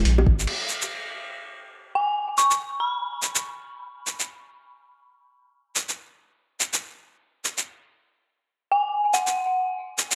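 A half-time 4/4 pulse at 142 BPM, swung on the sixteenths, sets a slow, meditative gait for this brooding deep dubstep excerpt. A soft, round sub bass with a triangle-and-square tone sits up front for only the first 0.5 seconds, sustaining deep in the low register. The trip hop sampler-style drum kit enters at 0.1 seconds and runs to the end of the cut with crash cymbal, hi-hat and shaker, its pitched-down, compressed sound gritty and re-recorded in a large room. A dark, detuned FM synth bell appears briefly at 2.0 seconds and again at 8.7 seconds, high and eerie, with inharmonic tones that decay into a long release through chorus, phaser and dub echo. A wet spring reverb hangs over the mix, deepening the shadowy, introspective atmosphere.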